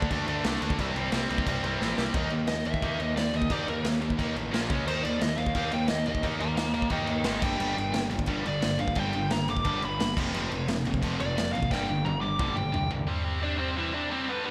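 Set in a big arena sound with moderate concert-hall reverb over small-room ambience, this rowdy, rebellious punk rock excerpt drives at 176 BPM in a straight 4/4. Two tight, bright distorted guitars pick out the riff, one sitting in the background and the other very quiet, over a growly fuzz bass and a gritty, saturated garage kit that sits up front with a punchy kick, dark cymbals and a pumping room, punctuated by drum fills. A biting, overdriven lead guitar with slapback echo enters at 2.5 seconds for a solo that runs to 13.1 seconds, and it rings on with the louder riff guitar to 14.5 seconds.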